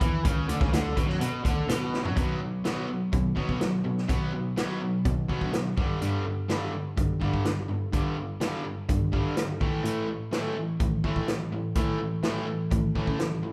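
Swaggering and driving, this classic rock excerpt in B minor moves at 125 BPM in a straight 4/4, with a cranked stack guitar up front pushing a bright, overdriven picked riff while a second crunchy guitar plays a riff further back in the mix. A rich, bowed cello with vibrato carries the bass line in the background, and a vintage acoustic drum kit sits up front with a punchy kick, medium-tuned snare and rolled-off top, firing a fill at 1.9 seconds before the section shift at 2.2 seconds. The chords move from Bm to B5, G5 and A5, and the band sounds like it is playing live in one large studio room with moderate reverb.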